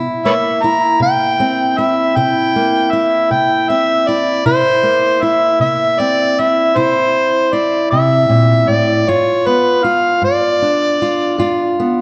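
A dark, fingerpicked steel-string acoustic guitar opens this soulful, rollicking acoustic country blues in 12/8, joined at 0.3 s by an up-front, amplified and overdriven harmonica that carries the jazz-style solo melody with gritty tone, light vibrato, tongue slaps and scooped notes, all set in a moderate scoring-stage reverb in a short cut from a longer piece.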